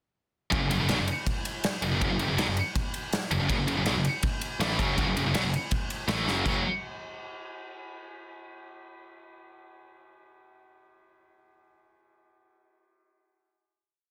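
A relentless, epic heavy metal piece in F# minor opens at 0.5 seconds with three distorted electric guitars hammering out a power-chord riff at 162 BPM in a straight 4/4. Alongside the heavy high-gain guitar, a scooped high-gain guitar and a double-tracked, compressed fuzz guitar fill in the background, all picked and bright, moving between F#2 and A3. Underneath, a growly, overdriven fuzz bass drives eighth notes low in its register and doubles the guitar riff. A big acoustic drum kit, up front in a studio room, pounds a metal drive groove with a punchy kick, medium-tuned snare, crash and ride cymbals, and throws in a fill at 6.3 seconds. The riff resolves onto a final F#5 chord at 6.5 seconds, with studio reverb and a dense, heavily limited modern master giving the whole short piece a crushing weight.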